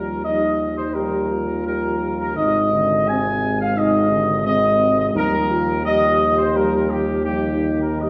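In a straight 4/4 at 86 BPM, this triumphant, majestic classical brass excerpt in Eb major moves from Ebadd9 to Ab and back to Ebadd9 over about 8 seconds. A dark, tight trumpet section carries the melody up front. Beneath it, a mellow French horn section with soft attacks and light vibrato and a distant, roomy trombone section in the background hold sustained chords, while a smooth-topped tuba anchors the bass, all set in the wet reverb of a church or concert hall.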